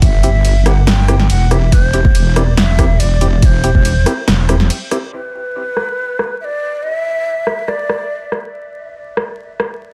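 A heavy, dark deep dubstep excerpt at 141 BPM in a half-time feel opens straight into the drop: a breathy, vibrato-laden ney melody trails dub echo over a wobbling, saturated sawtooth bass pushed up front and an overdriven deep electronic kick. A deep house kit with a punchy snare, low-passed hi-hats and ride, and rim clicks sits alongside hollow, percussive organ stabs with subtle chorus and echo, framed by light digital reverb, vinyl crackle and a dense, heavily limited master. The kick drops out at 3.8 s and the bass at 4.7 s for a short break, after which the ney and kit carry the sparser closing section.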